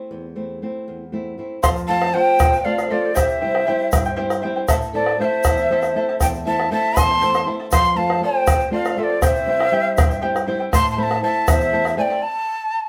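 A fingerpicked flamenco guitar opens alone in this festive, earthy Andean folk excerpt in A minor, in 6/8 at about 79 BPM. At 1.6 s a breathy, chiffy quena takes the up-front melody with vibrato, joined by an airy pan flute second line, shimmering double-strung charango, a round bombo and a grainy egg shaker. The tempo quickens throughout until the accompaniment drops away around 12.2 s, leaving the quena briefly alone in a wet studio reverb.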